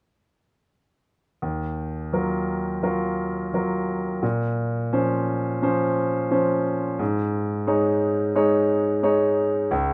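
Classical excerpt for solo concert grand piano, tender and hopeful in a rubato 4/4, with the bright, brilliant piano sitting up front in light reverb, its deep bass and long sustain carrying an accompaniment through Ebmadd9, Bbmadd9 and Absus4 from 1.4 to 9.9 seconds.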